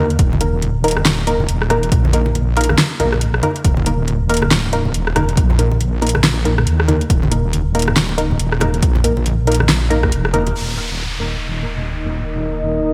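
A heavy, saturated sawtooth wobble bass and muted, detuned dub chord stabs carrying chorus and dub echo open this dark, cavernous deep dubstep excerpt at 139 BPM, its half-time 4/4 feel swung on the sixteenths. An overdriven deep house kit with a fat snare, metallic hats and rim click sits up front beside a punchy, layered kick and very quiet, low-tuned congas, until the drums stop around 10.5 seconds. A filter sweep then runs through the stabs as an electronic downlifter enters, and at 11.5 seconds a moody, sub-octave pad with a slow attack and built-in reverb joins, the whole mix bright in a 1980s-style digital manner with light reverb.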